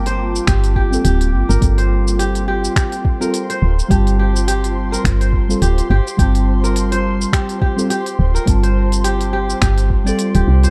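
A dark, dry production frames this earthy, hypnotic stretch of organic downtempo in G minor at 105 BPM, swung on the sixteenths and resting on a single Gm7 chord. A woody, round FM bass sits up front with sidechain pumping, a soft electronic kick enters at 0.5 s, and an electronic kit of cabasa, finger snaps and crisp hi-hat comes in at 0.1 s. Muted, felt-like synth keys carry vintage 12-bit sampler grit, chorus, delay and pumping, a bright, fingerpicked kora rings out arpeggios through its own delay, and an ethereal, airy pad drifts in the background with ensemble chorus, built-in reverb and pumping.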